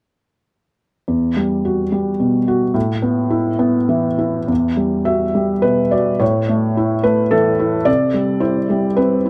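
Neoclassical minimalist piano in E minor at 106 BPM in a rubato 3/4 with uneven beats, this wistful, intimate excerpt cut from a longer piece features a solo felt-muted upright piano, soft, mellow and up front with a touch of tape echo, playing from 1.1 to 9.3 seconds across a range of E2 to E5 through Emadd9, Asus2, A and C chords in a dry, close 1970s-style studio recording with light reverb.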